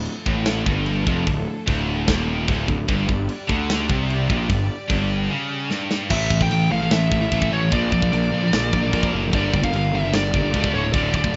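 Relentless and dark, this heavy metal excerpt opens with a pair of scooped, high-gain rhythm guitars riffing in the background over a round, fuzzy picked bass that sits up front, while a tight, mid-forward drum kit with bright china and crash cymbals drives the straight 4/4 pulse and a clear, biting string section holds sustained chords behind them. After a drum fill at 5.7 seconds, a distorted lead guitar enters at 6.1 seconds with a high melody as the harmony moves through A, Bb and Gm before returning to Dm. The dry sound has the rough, dull-topped character of a home demo.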